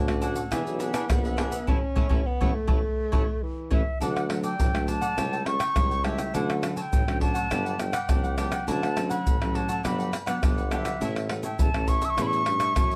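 A straight 4/4 samba-and-choro groove at 103 BPM rides on egg shaker, pandeiro, tamborim and a tight surdo, played with soft hands, close, dry and up front. Beneath it, a crisp, picked cavaquinho and a full-bodied, fingerpicked classical nylon-string guitar lay out D major changes over a clear, vintage-sounding tuba bass with light vibrato and scooped notes. A dark, breathy tenor saxophone carries a whispered, intimate second line from the start, through the band accent at 1.7 seconds, until it stops at 4.0 seconds, as a pure wooden flute with crisp attack, lifted highs and plate reverb takes the melody from 3.7 seconds, giving this joyful, festive cut from a longer piece, tuned to A4 = 435 Hz, its lift within a light room reverb.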